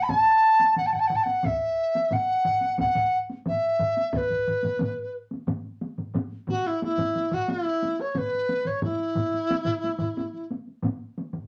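Heard in a moderate studio ambience with a short room decay, this excerpt of Japanese traditional taiko drum ensemble music sounds powerful and ceremonial, moving at a straight 89 BPM in 4/4. Up front, a large bamboo dizi carries the melody between E4 and B5, its buzzing membrane lending a reedy edge to an otherwise pure tone, shaped with vibrato and tongued notes while still sounding distant. Beneath it, several layers of taiko are struck with heavy sticks: one ensemble layer is compressed and saturated, another sits in a small room, and a solo taiko set is miked close yet kept in the background. A further hard-stick ensemble in a small room also sits in the background, and one of the drum layers stops at 4.3 s. The dizi falls away at 10.5 s, leaving the drums to carry on alone until the cut near 11.5 s.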